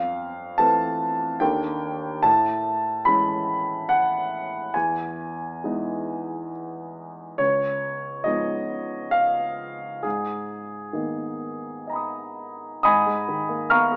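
A clear, up-front grand piano with long sustain plays alone for the full 14 seconds of this mysterious, hazy fragment of an impressionist classical piece, moving in a rubato 3/4 at about 60-74 BPM through lush chords such as Fmaj7#11, Amaj7 and C#9 before settling on G#madd9, with the instrument heard in a moderate recital-hall reverb through a small-speaker sound.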